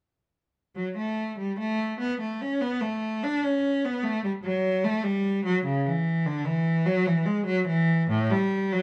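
A single bowed cello opens the recording at 0.8 s, rich and up front, playing alone in a baroque-style suite movement for unaccompanied cello. The mood is flowing and radiant, moving in 3/4 with a free, rubato feel that lets the phrases breathe. The playing sits between A2 and D4, with a smooth, even tone coloured by a light vibrato. Light reverb surrounds the close, detailed sound, which still carries a faintly distant quality. This brief passage, cut from a longer piece, ends at 8.8 s.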